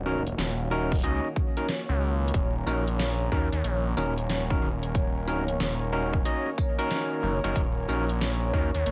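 A gritty, nasal synth bass sits up front in this swaggering, playful glitch hop fragment, its saturated, resonant sawtooth tone ranging from Eb1 to Eb2 under a single Ebm7 chord. The groove runs at 92 BPM in 4/4 in Eb minor, with a 64% swing on the sixteenths. A punchy, overdriven electronic kick joins at 0.9 s, up front beside a dubstep kit of hi-hat, rim click, deep snare and tambourine, both re-recorded in a small room. An overdriven tine electric piano plays bright, barky stabs through a combo amp, with digital delay and sidechain pumping. In the background, a smooth, detuned analog pad holds sustained chords with chorus and 12-bit sampler grit, while a warbling, nostalgic tape-like pad hangs on a high Db5 with its own reverb, and both pads pump with the sidechain. Vinyl crackle and light digital ambience surround this short cut from a longer piece.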